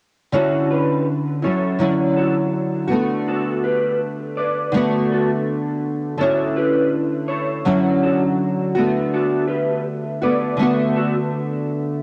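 Dreamy and nostalgic, this short indie pop excerpt drifts along at 82 BPM in 4/4 with a straight feel in D major, cut from a longer piece. Up front, a bright, fingerpicked nylon-string guitar carries the accompaniment in a classical style from 0.3 s to 12.0 s, its tone colored by analog chorus, warbly pitch drift and cassette tape. Behind it, an electric guitar through a small old amp plays a second line in a higher register, dark, slightly broken-up and lo-fi, with analog chorus, cassette tape and tape echo, and it stops at 11.1 s. The harmony sways between Dmaj9 and Bm7/D. A moderate, lush hall reverb and the grain of a home cassette recording give the whole piece a hazy, faded glow.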